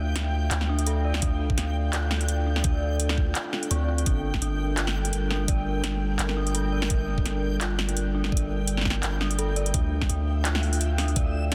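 An excerpt of cinematic, spacious half-time drum and bass in D minor at 169 BPM opens with a moody, wave-folded analog pad pumping with sidechain and chorus, an eerie FM synth bell tracing arpeggios through chorus, phaser and delay, a deep, up-front 808-style sine bass, and a dreamy reversed granular texture shimmering above. A drum kit with cracking snare, metallic hats and handclaps arrives at 0.2 seconds, and a knocking, tape-warm kick joins at 1.2 seconds, dropping out briefly at 9.4 seconds. Meanwhile the chords move from Dmadd9 to Gm at 4.1 seconds and back at 9.7 seconds, all inside a dense, heavily limited master with light digital ambience.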